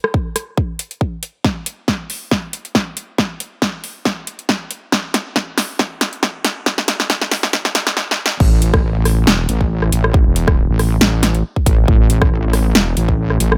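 Dry, high-passed and punchy, this menacing heavy wobble dubstep excerpt at 138 BPM in a swung half-time feel opens with a layered electronic kick and a big-room dance kit of crash, metallic hi-hat, rim click and snare driving a build-up with a filter sweep and drum fills, until the drop at 8.4 seconds brings in a saturated, chorused sawtooth-and-sine wobble bass that wobbles between E1 and A1.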